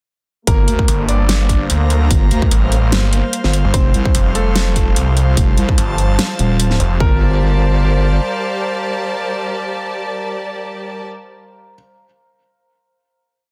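A snarling, distorted saw bass growls up front through the drop, its detuned unison tone carved by a moving notch into chopped phrases that answer a heavy wobble bass, whose saturated square-and-sine sound carries modulated phrases with changing wobble speed. Underneath, this heavy, menacing wobble dubstep piece rides a swung half-time groove: a punchy electronic kick with a large-room character sits beneath a huge snare and metallic closed hats. A string section plays bowed, sul tasto chords with vibrato, pumping against the sidechain through a low-pass filter, while a breathy pad of detuned triangle and saw with a noise layer drifts above with slowly shifting chords. A clear grand piano, set in the background with audible action noise, repeats a riff melody in octaves through a dub echo. After the drop ends at 7.0 seconds, the drums and saw bass fall away into a final chord, the wobble bass holds on until 8.2 seconds, and the piano lingers alone until 11.7 seconds. 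The mix is dense and heavily limited, with light reverb.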